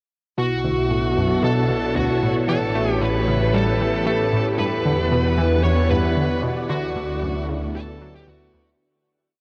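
Bathed in huge, long-tailed reverb and the warble of worn old cassette tape, this short, cosmic piece of ambient, sequencer-driven space music sets an up-front, distorted fuzz lead guitar wandering freely over swirling, vintage phased string machine chords, a metallic, ringing vibraphone played with soft mallets tracing a 10-step arpeggio loop and a round, brilliant analog pluck repeating a 5-step riff, both drifting against the bar in the background, while a fat, detuned analog bass holds a steady B root beneath a Bm7, A7, Em7, Dadd9 progression before everything fades out from 6.0 seconds.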